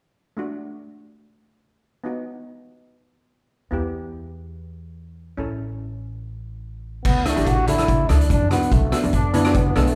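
A shimmering double seconds steel pan, struck with hard rubber sticks and sitting up front, opens this carefree, sunny calypso fragment with a metallic accompaniment over a lilting, lightly swung groove. A woody upright bass joins at 3.7 seconds, its pizzicato notes thumpy and warm on steel strings. Around 7.0 seconds the music shifts into a new section as a loose acoustic drum kit arrives with dark cymbals, hi-hat, rim click and a tight kick, sounding distant and roomy. Just after, a vintage-toned trombone takes a bright solo melody in a classical style, while low-tuned congas ring softly in the background. At 9.1 seconds a clear horn section with light vibrato adds a tight, pop-style second line, and the whole recording carries the moderate reverb of a church or concert hall.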